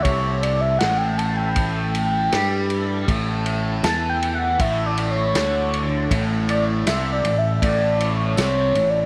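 Psychedelic rock at 79 BPM in a straight 4/4, this trippy, hypnotic cut from a longer piece centres on a gritty, screaming overdriven synth lead soloing over an A chord from 0.0 to 9.1 seconds, its sawtooth-and-pulse tone thickened with chorus, vibrato and a slapback echo. Beneath it a double-tracked fuzz guitar grinds out a distorted, phased riff, a picked electric bass with an envelope filter sits bright and up front, and a very quiet tonewheel organ holds lightly overdriven chords through a slow rotary speaker. A vintage drum kit with a punchy kick, medium-tuned snare and ride cymbal sounds natural in a small room with a rolled-off top, while a jingly, distant tambourine joins in the background at 3.8 seconds, all set in light reverb.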